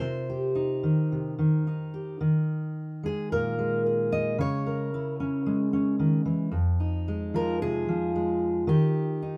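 A dark, full-bodied jumbo steel-string acoustic guitar carries this gentle, hopeful folk excerpt, fingerpicked alone and up front across its range from F2 to Eb5. Played with a rubato feel around 111 BPM in 4/4, it moves from Cm through Ebsus4, Dbm6 and Fm7 before arriving on Eb at 8.7 seconds. Moderate studio ambience surrounds the guitar in this short passage cut from a longer piece.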